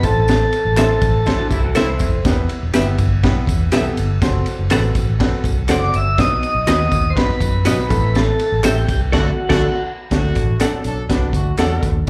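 This driving, urgent excerpt of uptempo 1960s-style soul at 122 BPM has the whole band hitting an accent together from 0.3 seconds: a smooth tonewheel organ with key click and slow rotary speaker carries the melody up front, over a woody upright piano with audible action noise, a round, foam-muted electric bass, a gritty, saturated breakbeat kit with a punchy kick and high-tuned snare, and tambourine and handclaps in the background. A compressed semi-hollow guitar adds stabs from 0.8 seconds, while at 1.3 seconds a mellow guitar riff with lush chorus and a jazz-style horn section with light vibrato join briefly; the horns return near the end as the band accents again. Slapback echo and club reverb give it the feel of a live gig heard through the venue's PA, moving from Am through F#dim to B and D.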